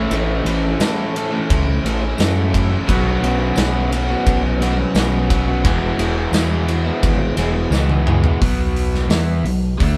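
This swaggering classic rock passage, cut from a longer piece, opens with a wall of overdriven guitars and a growling, fingered electric bass. A big acoustic rock kit joins almost at once, with a punchy kick, medium-tuned snare, hi-hat, ride and toms in a pumping room sound. It rolls along at a confident 87 BPM in a straight 4/4. Up front, the overdriven bass sits beside the drums, while a crunchy, picked electric guitar plays its own riff. Two bright, overdriven electric guitars play riffs farther back, one compressed and the other double-tracked. A boxy, swing-style plugged-in acoustic guitar is tucked very quietly underneath, and a jingly tambourine sits in the background. The harmony moves from Aadd9 through Bsus2 to E, then a drum fill from 7.7 s launches a new section on B5 at 8.4 s, where the acoustic guitar and one electric guitar drop out. A moderate stone room reverb binds the band together like a live performance in one space.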